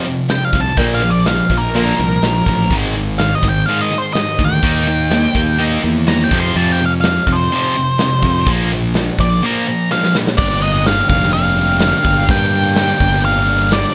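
Quiet-loud alternative rock at 125 BPM in a straight 4/4, this cathartic, anthemic passage is cut from a longer piece. Up front, an octave-fuzz lead guitar carries a soloing melody high on the neck through distortion and slapback echo, while a thick, murky fuzz guitar and a tight, bright distorted guitar churn out riffs over power chords moving through F5, Bb, Ab5 and Eb. A boxy acoustic archtop sits in the background with picked arpeggios and audible finger squeak, but only for the first 2.7 seconds. A big rock kit with a punchy kick, medium-tuned snare and bright cymbals drives things in a big-room sound, joined by a round, overdriven fingered bass. After a drum fill, the tight guitar drops out at 10.4 seconds and the section turns to a Gm7, where a dark chamber string section enters behind the band with reedy, nasal, gut-string sustained chords in a period style.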